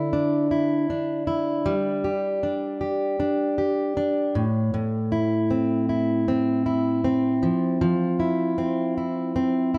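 Tender and wistful, this short pop excerpt moves at a relaxed 78 BPM in 4/4 with a gentle swung sixteenth-note feel. A lone fingerpicked, plugged-in steel-string acoustic guitar with a jumbo, full-bodied sound sits up front, ranging from A2 to A4 across chords of Dsus2, G5, Am and F5. A moderate plate reverb and a dark, warm production give the guitar an intimate glow.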